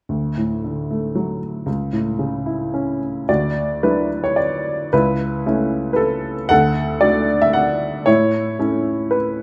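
A worn, boxy baby grand piano sits up front with audible action noise and short sustain, playing a relaxed, hopeful classical solo in D major at 113 BPM in a lyrical, rubato 3/4, its phrases moving between D and A/C# chords, colored by a Dadd9 at 3.3 seconds and arriving on A at 8.1 seconds in this brief cut from a longer piece, heard in a moderate recital hall reverb.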